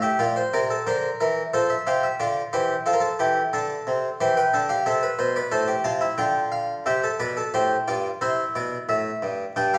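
Set in a steady, straight 4/4 at 90 BPM, this joyful and stately excerpt of a baroque-style three-part fugue features a solo Flemish-style harpsichord, plucked and brilliant with mid-forward octave strings, placed up front in a wet recital-hall reverb and moving through Bb, F and C harmonies across its 9.8 seconds.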